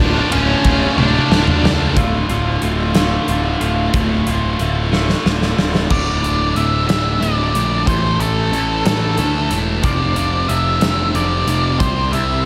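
Angsty and brooding, this quiet-loud alternative rock passage moves in a slow 6/8 at 61 BPM, set in D harmonic minor before settling into D minor at 5.9 s. A growly, up-front fuzz bass runs throughout, and a big rock drum kit with a punchy kick, medium-tuned snare and a dark, rolled-off top enters at 0.3 s, with fills leading into each new section. The opening pairs a dark octave-fuzz lead melody, touched with tape echo, against a bright overdriven riff guitar and a scooped high-gain guitar. From 2.0 s a slightly broken-up, compressed guitar plays chorus-drenched arpeggios with slapback echo in the background. At 5.9 s the scooped guitar stops as the lead and overdriven riff return over power chords moving from D5 through A5 and F5 to C5. A lush hall reverb gives the whole a big arena sound, and the recording is cut from a longer piece.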